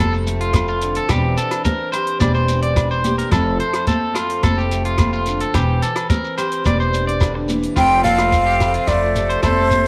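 A straight 4/4 groove at 108 BPM sets this sunny, danceable highlife guitar-band piece in motion, cut from a longer performance in F major, with the harmony swaying between F and Cadd9/E. A compact cocktail drum kit keeps it dry and tight with hi-hat, kick drum and rim click, while shekere, high-tuned congas and ringing agogo bells sit in the background, the shekere grainy and the congas thin-skinned with a vintage, band-limited tone. Up front, a woody, growly pizzicato upright bass anchors the low end, an electric guitar at the edge of break-up plays twangy arpeggios through a slapback echo, and a picked steel-string acoustic guitar fills in accompaniment with audible finger squeak. At 7.8 s a breathy jazz flute takes the melody up front with soft attack, vibrato and lifted highs, joined by a raspy, gritty alto saxophone on a second line further back. Light reverb and a small-room ambience give the band an intimate, natural feel.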